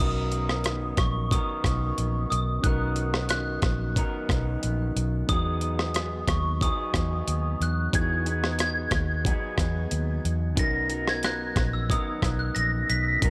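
Indie and bedroom pop in a nostalgic, hazy mood, this short excerpt rides an unhurried straight 4/4 groove over Bmaj7 and Emaj9 chords, with a bell-like glockenspiel carrying the melody high above, its hard plastic mallets ringing through an ensemble chorus. Beneath it, an electric guitar through a small old amp adds slightly broken-up, lo-fi picked accompaniment with subtle chorus and vibrato, while a tine electric piano sits cleanly in the background, coloured by cassette tape. A dark, round, foam-muted fingered bass and a gritty, overdriven sampler-style drum kit of thumpy kick, hi-hat and rim click, entering at 0.3 seconds, sit up front in a digital ambience.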